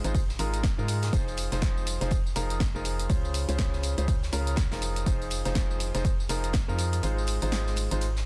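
A dense, heavily limited mix in a small room frames this bittersweet, energetic slice of piano house, cut from a longer piece and swinging on its sixteenths over a progression of Fm7 and Dbmaj7. A bright, polished concert grand plays a riff with sidechain pumping and digital delay, while a hollow, organ-like FM bass with tube saturation pumps underneath. A punchy, tape-warm analog drum machine supplies hi-hat, snare and tambourine, and a very quiet arena kit adds hi-hat and snare, as an up-front electronic kick drives the groove until it drops out at 7.0 seconds.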